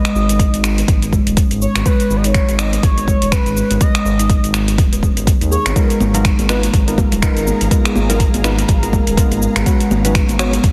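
Afro house with a warm, hypnotic swing, cut from a longer piece, where a smooth portamento lead with chorus and tape echo sings over the opening until 5.7 seconds, riding a dark, rumbling detuned saw bass, woody plucked kalimba arpeggios, an afro-pop kit of finger snaps, metallic hi-hats and shaker, and an up-front deep electronic kick, before round analog key stabs enter at 5.8 seconds, hard-handed congas enter very quietly at 6.0 seconds, and an ethereal tremolo pad drifts in the background, all under a heavily compressed, radio-like sheen.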